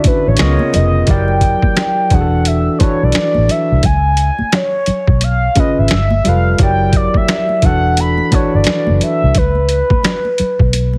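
A swung boom bap groove at 87 BPM in 4/4 anchors this introspective, sultry neo-soul R&B excerpt. Its pitched-down, sampler-style kit sits up front with a thumpy kick, medium-tuned snare, hi-hat and finger snaps, soft-handed congas sit in the background, and a dark, round, foam-muted fingered bass holds the low end from 0.1 seconds. A barky, overdriven tine electric piano heard through a combo amp plays chords such as C#13, F#7b9b13 and E9sus4 until 9.4 seconds, beneath a mellow, horn-like sawtooth lead with soft attack, vibrato, chorus and a filter sweep, all inside a heavily compressed, radio-like sound.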